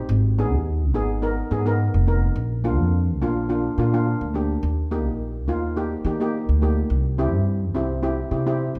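A moderate recital-hall reverb, about 1.4 seconds long, surrounds this short calypso excerpt, with both players sitting up front. It moves at a bouncy 106 BPM in 4/4 in E-flat major, its sixteenths carrying a light 54% swing that gives the sunny mood an easy lilt. A double seconds steel pan, struck with medium rubber sticks, supplies the accompaniment in a metallic, shimmering voice with a boxy small-room colour, staying between Bb3 and Bb4. Beneath it, a pizzicato upright bass with steel strings sounds woody and growly, ranging from F1 up to Eb3 and sitting a little louder than the pan. The harmony passes from Abm to Bb, then lands on Eb at 4.6 seconds before turning to C, with both parts playing throughout the clip.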